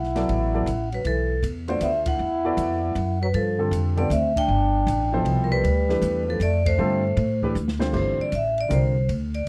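A ringing, metallic vibraphone struck with medium hard mallets carries the melody in this intense, cool modal jazz excerpt, swinging in 3/4 at 157 BPM over E9sus4 and G9sus4 harmonies, with band accents along the way. A breathy trombone with vibrato and scooped notes adds a second line until 7.4 seconds, while a woody pizzicato upright bass sits up front, a baby grand piano accompanies with intimate, audible action noise, and a dark, smooth drum kit with a boomy kick sits low in the mix. After a drum fill, the vibraphone takes a short solo over Gm11 from 7.9 seconds, all heard in a dry, close 1970s-style studio sound.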